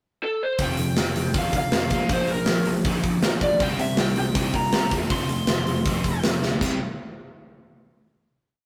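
A rough rehearsal-room recording with saturation and a stone room's reverb carries this rowdy, energetic punk rock piece at 160 BPM: a lo-fi lead guitar through a small cranked amp plays a motif-based melody from 0.2 s, joined at 0.6 s by two sludgy, palm-muted distorted guitars sitting back in the mix (one very quiet), a growly, foam-muted picked bass driving eighth notes, and an up-front big rock kit with a punchy kick and bright cymbals whose fill at 6.4 s leads into the final chord.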